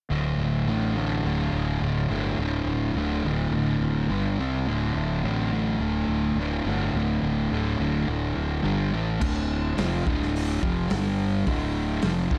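Garage rock with a menacing, raw edge, this short cut from a longer piece moves at 106 BPM in a straight 4/4 and sits in D minor. A double-tracked, compressed fuzz guitar plays the riff up front from the start, its distorted tone warm and picked, while a growly, overdriven fingered bass holds down the low end with punchy tube-saturated grit. The pair work through power chords on D, G, C and A before the harmony settles onto D minor at 9.2 seconds. That is where a raw garage drum kit comes in, its punchy kick, medium-tuned snare, hi-hat and crash carrying a gritty, saturated sound with a rolled-off top and a pumping small-room feel. Light reverb gives the whole a close, unpolished space as the riff returns to D minor after a brief turn to G.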